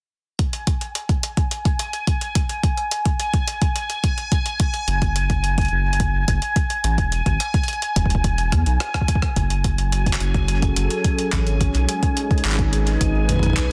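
A gritty, pitched-up jungle sampler kit of handclaps, hi-hat and rim click drives this intricate, melancholic IDM fragment at 107 BPM in a straight 4/4, with soft clipping on its snare and a touch of delay over a small room ambience. Beneath it sits a soft, up-front electronic kick, while a bubbling, resonant sawtooth texture hovers on a single high note, its filter stepping at random through chorus and built-in reverb. A round, deep analog bass with a fast attack enters at 4.9 seconds, anchoring the harmony on E before a drum fill at 8.5 seconds. At 9.8 seconds a warbling, nostalgic tape-like pad fades in slowly with detuned, lo-fi chords that move from F#m to G#m in F# dorian. The mix is dense and heavily limited with light reverb, and the piece is cut from a longer work.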